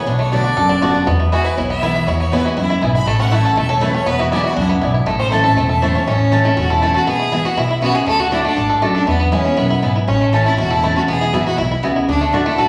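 Virtuosic and lively, this bluegrass cut in A major races along at 240 BPM in straight 4/4, with a biting, intense bowed fiddle taking a solo line over the first 6.1 seconds before another clear fiddle with light vibrato carries the melody from 6.1 seconds on. Beneath it, a twangy, percussive fingerpicked banjo rolls arpeggios up front. A bright, full-bodied dreadnought guitar picks the accompaniment, a round double-strung mandolin adds stabs, and a woody, thumpy gut-string upright bass plays pizzicato. The whole band sounds captured live in one large studio room with a generous reverb.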